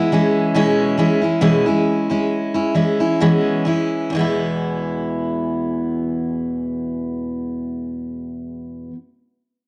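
A bright, full-bodied picked jumbo steel-string acoustic guitar sits up front, picking out an easy-going, heartfelt pop accompaniment in E major at 63-72 BPM with a light sixteenth-note swing, slowing down through the opening 4.1 seconds as it moves from E6/B to E, all bathed in moderate spring reverb on a home cassette recording cut from a longer piece.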